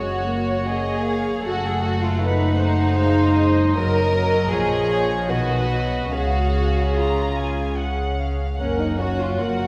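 An up-front violin section playing a second line with light vibrato sits alongside an intimate violin melody, while violas, background cellos and double basses add pure, floating, soft-attack sul tasto support in this serene, tender slow romantic movement for string orchestra, shaped with flexible rubato in 3/4 and bathed in wet hall reverb.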